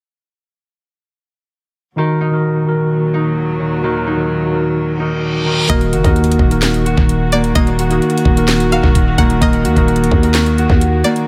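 A mellow tine electric piano, reedy chamber strings with light vibrato and a ringing, thumb-plucked harp with dub echo open this menacing, hard-hitting half-time trap excerpt in Eb minor at 129 BPM, until a reverse cymbal at 5.0 seconds rises into an impact at 5.7 seconds, where a knocking trap kit with sharp snare, claps and metallic hats arrives up front alongside a growling, buzzy 808 bass and a twangy, bright resonator pluck with chorus, all set in light reverb and digital ambience.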